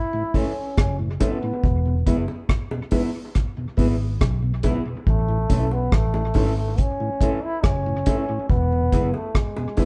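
A laid-back, sunny roots reggae groove in A major at 70 BPM in straight 4/4 is carried by a dry, up-front drum kit with a tight kick, hi-hat and rim click, joined at 0.8 s by a round, foam-muted fingered electric bass and soft-handed, high-tuned bongos set back with dub echo. A mellow tonewheel organ with key click and slow rotary speaker and a clean, fingered electric guitar bathed in spring reverb accompany the chords as they move between A and E. Over the top, a distant, roomy trombone sings the melody with vibrato, the whole band sounding as if playing live together in a large studio in this brief excerpt from a longer piece.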